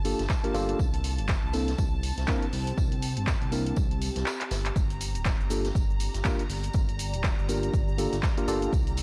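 A swung 121 BPM deep house groove in G minor, cut from a longer piece, drives this deep, moody passage: a punchy, overdriven electronic kick sits up front beside overdriven electronic handclaps, hi-hat and shaker, with a natural acoustic kit of hi-hat, snare and tambourine in the background, while a smooth, dark gliding synth bass with portamento, clean tine electric piano stabs through a combo amp with tape echo, a clear bowed violin section with vibrato and an ethereal, airy pad with chorus and phaser pump against the kick over Gm9 and C13 chords, the kick dropping out at 4.3 seconds for a drum fill before returning at 4.8 seconds, the whole captured as a gritty cassette recording in a small room.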